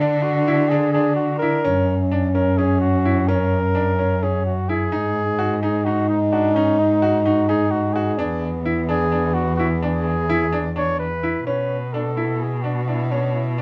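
A dark, warm production with moderate booth ambience frames this hypnotic, urgent piece of contemporary chamber music in 7/8, with a smooth-topped flugelhorn carrying the melody up front over a present French horn second line that falls away at 11.2 seconds. Brilliant, natural grand piano arpeggios run beneath, while a single bowed cello anchors the bass up front with a rich, expressive tone, soft attack, vibrato and portamento. Near the end, at 11.5 seconds, the music shifts into a brief new section on a Bm7 chord.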